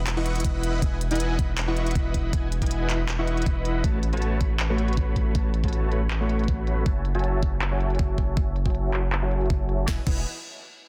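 A dense, heavily limited modern master with little reverb opens this bright, playful future bass excerpt, which moves at 159 BPM in 4/4 with a half-time feel and sits in E major, tuned to A4 = 442 Hz. A deep, thick, saturated sub bass sits up front, its sine-based tone roughened by tube saturation and pumping under sidechain compression across the full span. A huge, full-bodied supersaw riff built from detuned sawtooth unison layers with a sub octave carries the harmony, compressed and shimmering with vibrato, pumping against the kick, darkened by a low-pass filter and trailed by dub echo. Beneath it, a trap kit of sharp snare, crisp hi-hats, handclaps and crash cymbal comes in at 0.1 seconds, its hats, snare and cymbals low-pass filtered and the whole kit set in a small room ambience, and a knocking electronic kick joins at 0.4 seconds. Filter sweeps on the drums and the supersaw run until 9.9 seconds, when the chords come back around to Emaj9 after passing through A69 and F#m9.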